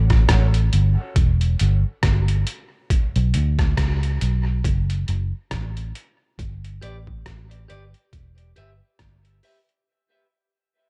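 A dark, foam-muted electric bass sits up front in this hypnotic, heavy dub reggae excerpt at 69 BPM, joined by a gritty, pitched-down sampler-style drum kit with a thumpy kick, hi-hat and rim click, while a bright, twangy clean electric guitar with dub echo enters faintly at 6.8 seconds over a dry, echo-heavy mix that fades out across its length.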